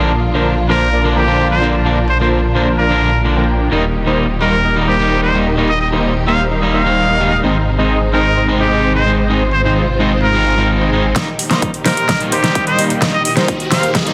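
A nasal, brilliant muted trumpet carries a classical-style solo melody with vibrato from 0.7 seconds, over a euphoric, uplifting festival progressive house excerpt built on huge, detuned supersaw chords, a thick, menacing saw bass, a slightly broken-up, twangy electric guitar and a dark symphonic string section in the background, most of them pumping against the sidechain and bathed in lush hall reverb, with tape echo on the guitar and supersaws. The bass drops out as a build-up and drum fill begin at 11.2 seconds, bringing in an overdriven big-room kit with a huge snare and metallic hats, a punchy layered kick, and a catchy, mellow plucky lead playing arpeggios. A very quiet riser joins at 12.7 seconds, all within a dense, heavily limited modern master.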